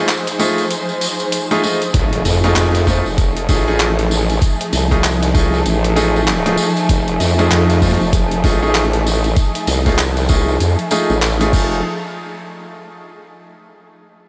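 A formant-sweep wobble bass sits up front in this gritty, playful glitch hop excerpt, its sawtooth-and-sine tone wobbling under a filter sweep and a touch of chorus from 1.9 seconds onward, arriving alongside a thumpy, pitched-down electronic kick and a faint electronic impact in the background. From the opening break onward, dark, woody string chords bowed with vibrato pair with bright grand piano stabs roughened by vintage 12-bit sampler grit, low-pass filtering and delay, both pumping to the sidechain over an F7#9 chord. A compressed, sampler-style boom bap kit with a high-tuned snare, handclaps, hi-hat and crash cymbal runs throughout, re-recorded in a large room, while a jingly, band-limited tambourine adds light percussion. The swung sixteenths give the groove a loose bounce. A huge ambient reverb soaks the whole mix in a dreamy haze until the parts stop at 11.8 seconds.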